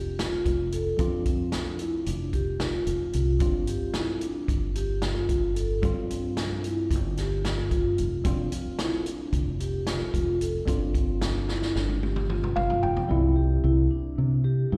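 Intricate and driving, this progressive instrumental fragment moves in a straight 9/8 at 223 BPM (eighths), with a worn, slightly out-of-tune tine electric piano lightly overdriven through a combo amp with slapback echo, ringing soft-mallet vibraphone arpeggios with slow motor vibrato, a foam-muted fingered bass up front, and a punchy vintage drum kit with a rolled-off top, whose fill from 11.5 s joins an electric piano fill before the harmony settles from Dm7/F through G5 to C at 13.1 s, all heard through a live venue PA in light recital-hall reverb.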